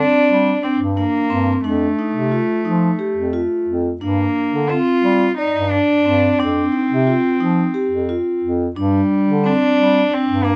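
Urgent yet pensive, this short contemporary instrumental passage moves in an uneven 7/8 at 177 BPM counted in eighths, settled in G minor and tuned to A4 = 439 Hz. A single bowed cello carries the melody between G3 and F4, played sul tasto with a pure, floating tone and a gentle attack that sits up front. Alongside it, a vibraphone struck with soft mallets, motor off, spins arpeggios from C4 to D5, its metallic ring mellowed into a warm, mid-forward shimmer. A bass clarinet in a classical style holds down the low line from F2 to G3, its soft attack and smooth top lending a warm foundation. The three parts play together from 0.0 to about 10.6 seconds over a progression of Gm, F7, Gm7, F5 and G5, wrapped in light reverb, before the clip breaks off mid-piece.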